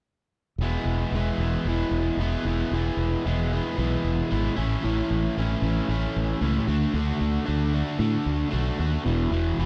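Swaggering and driving, this short rock clip in E major at 114 BPM runs a picked, double-tracked and compressed distorted electric guitar riff up front alongside a punchy, bright fingered electric bass, both playing from 0.6 to 9.7 seconds through E, A and D before landing on E5 at 9.1 seconds, all in a dry, close 1970s-style studio sound.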